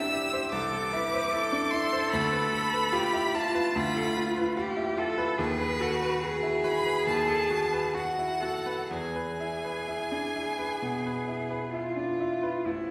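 A rubato 4/4 pulse at 60-76 BPM carries this yearning, solemn slow romantic movement for piano trio, cut from a longer piece, where a focused, up-front violin sings the melody with vibrato from B4 to E6 over a smooth, even cello second line, while a brilliant, intimate baby grand with audible action noise supplies the accompaniment through chords moving from Am/C to a closing E at 8.9 seconds, all three set in a reverberant recital hall with a 1.6-second decay.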